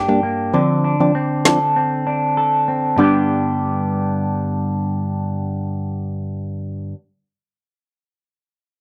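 A clean, picked electric guitar opens this hypnotic, sultry dancehall excerpt, its arpeggios run through an envelope filter that gives them a bright, twangy edge, held compressed and up front. Just behind it, a percussive organ stab enters at 0.1 seconds with hollow, mellow stabs that strike quickly and decay, colored by chorus and phaser. The only hit from the electronic snare arrives at 1.5 seconds, a woody, overdriven crack placed up front in the mix. A break follows from 1.8 to 3.0 seconds before the music moves into a new section, with the harmony shifting from minor chords to a major one. The overall production is dark with a light reverb, leaving the guitar and organ to carry the groove on their own for most of the passage.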